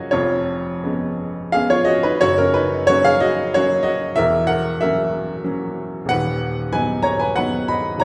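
A clear, woody upright piano with audible action noise and a short, natural sustain plays alone through this passionate romantic character piece in a rubato 3/4, ranging from deep bass to the upper middle register across a brief 8-second cut from a longer work, its intimate, up-front tone set inside a reverberant recital hall heard from further back in the room.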